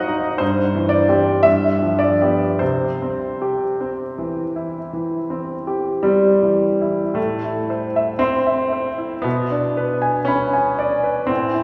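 A clear concert grand piano plays alone in a slow, rubato romantic nocturne at 50-60 BPM in 4/4, opening on C/G at 0.4 s and moving through G7 back to C. Its smooth, vintage tone with a deep bass spans G2 to C6, set in a wet church reverb heard from further back in the room. At 7.2 s the music turns to A minor and passes to G#dim/B, deepening the dreamy, nostalgic mood of this fragment cut from a longer piece.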